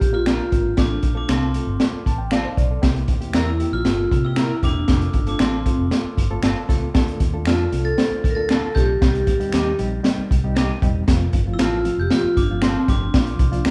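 A crunchy breakbeat drum kit sits up front in this joyful, uptempo 1960s-style soul excerpt at 116 BPM, its punchy kick, high-tuned snare and hi-hat sounding saturated and gritty with a rolled-off top. The vibraphone carries the melody with medium hard mallets, metallic and ringing with a slow motor vibrato in a boxy small room, while a bell-like glockenspiel struck with brass mallets traces a quieter, band-limited second line above it. A reedy, worn reed electric piano, slightly out of tune and pulsing with fast tremolo through its built-in speakers, supplies accompaniment and adds a fill from 1.8 to 2.8 seconds. Underneath, a vintage foam-muted fingered electric bass stays round and dark, and from 0.3 seconds a bright, twangy electric guitar through a small old amp adds slightly broken-up picked stabs alongside a close, dry finger snap in the background. The band plays live in one room with light reverb, moving from Bb through F, C7, Dm and Cm before landing back on Bb.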